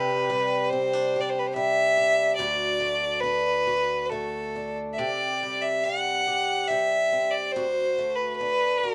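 A clear, smooth fiddle carries the melody up front, bowed by a single player with light vibrato and an even tone, in this tender, wistful Celtic slow air in 3/4 with a free, rubato feel. Beneath it, a picked swing-style acoustic guitar accompanies through chords moving from Cadd9 to D, C5 and back to D, its strings giving off an audible finger squeak. The two play together live in one room with light reverb across this 8.9-second section cut from a longer piece.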